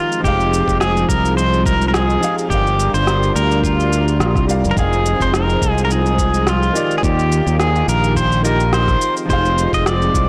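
An up-front pedal steel guitar carries the melody in this smooth, relaxed sunset chillout excerpt. Its clean, fingerpicked slide lines, shaped by volume swells, are dressed in vintage sampler grit, tape echo and shimmer reverb. Beneath it, a thick, detuned unison pad holds sustained chords with a slow attack and a warbling chorus. A clear but worn concert grand piano sits in the background, entering at 0.2 seconds with echoed accompaniment, alongside a bright, direct fingered electric bass with tube saturation and a compressed, thumpy electronic kick with a tape-toned, small-room character. An electronic shaker and rim click, starting at 0.1 seconds, give the lightly swung sixteenth-note feel a softly clipped snare edge, as the harmony moves between Fm7, Gm7 and Ebmaj9 in a lush hall on a blown-out, overdriven recording.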